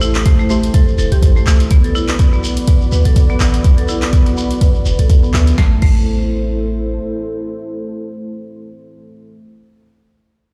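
A swung groove drives this spiritual, warm afro house excerpt. The deep electronic kick sits up front, with a deep house kit of punchy snare, handclaps, hi-hat and crash cymbal, and a grainy acoustic shekere adding texture. A boomy, tube-saturated 808-style bass anchors the low end, while a marimba struck with hard mallets plays woody, bright arpeggios through a low-pass filter sweep and digital delay until 6.0 seconds. A soft, detuned chord stab with chorus and delay marks the opening Am7 before the harmony moves to Bm7. A moody, dark analog pad with 12-bit sampler grit sustains chords throughout, outlasting the other parts as the music settles on A minor at 5.6 seconds. Sidechain pumping makes the pad, stab, marimba and bass breathe, and the whole mix sounds as if played on a big sound system in a bare stone room.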